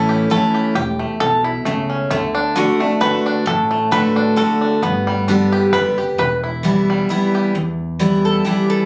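A twangy, fingerpicked five-string banjo takes the lead from the start, backed by a bright, full-bodied picked dreadnought guitar and a woody, thumpy pizzicato upright bass on gut strings, in a haunting yet driving bluegrass excerpt in E dorian at 133 BPM in a swung 3/4, moving through A, D, G and E minor. The banjo solo ends at 7.5 seconds, and a metallic, nasal lap resonator guitar played with a steel bar and fingerpicks enters up front at 8.2 seconds for a brief solo. The sound is that of a phone capturing a club room, with moderate reverb, compression and club ambience.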